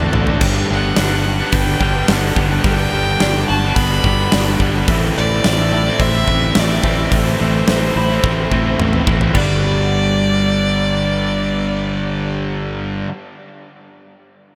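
A dreamy, reverb-soaked mix with a huge ambient tail frames this soaring, hopeful post-rock excerpt in G major, moving at a straight 108 BPM in 4/4. A rich, smooth bowed violin carries the melody with vibrato and tape echo, holding the high register until about 12.3 seconds. Underneath, a twelve-string electric guitar picks clean arpeggios bathed in lush chorus and tape echo, sitting in the background, while a double-tracked fuzz guitar drives a distorted riff up front. A growly fingered electric bass anchors the low end, and a huge arena drum kit with bright cymbals, a punchy kick and a medium-tuned snare rolls in with a fill at the start and again from 8.2 seconds before stopping at 9.5 seconds. The harmony shifts from Gmaj7 to Am and returns to Gmaj7 as the music opens into a new section at 9.3 seconds.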